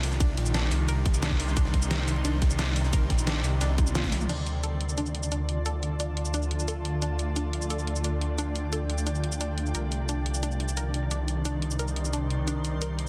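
Dense, heavily limited and lightly reverberant, this aggressive, mechanical excerpt of dark technical drum and bass at 176 BPM in D phrygian opens on a drop where a tight, up-front electronic kick and a gritty, pitched-up jungle sampler kit sit under a layered dubstep kit with a deep snare through a drum fill at 3.8 s, while a snarling, saturated sawtooth bass growls up front over a swarming, warbling drone with phaser, a cloudy, blurred granular pad and a round analog pluck arpeggiating through chorus and digital delay in the background, all moving from Cmadd9 to Dm at 4.3 s and back at 9.7 s.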